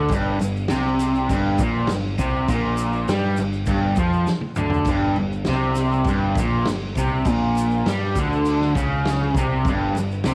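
A straight 4/4 groove drives this swaggering, raw garage rock excerpt, with a vintage acoustic drum kit of punchy kick, medium-tuned snare, toms and dark crash cymbals, and a fill between 4.3 and 4.9 seconds. A bright, overdriven, double-tracked electric guitar riff sits up front with a cassette-tape grit, over a growling overdriven picked bass, while a grainy tube shaker stays in the background. The whole take has the feel of a home cassette recording in a small room, complete with vinyl crackle.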